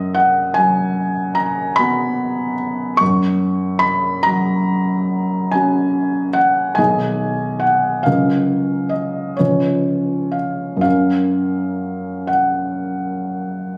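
A slow, rubato 9/8 sway at 40-50 BPM in dotted quarters carries this short, nostalgic and dreamy romantic nocturne for solo felt-muted upright piano in F# major, tuned to A4 = 443 Hz and cut from a longer piece. The piano sits up front with a soft, intimate, mellow tone and audible action noise, ranging from B1 to C#6 as the harmony drifts from B/F# through G#m/B and C#7 before settling on F# at 10.8 seconds. Captured on a phone in the room, the sound carries light club reverb and compression.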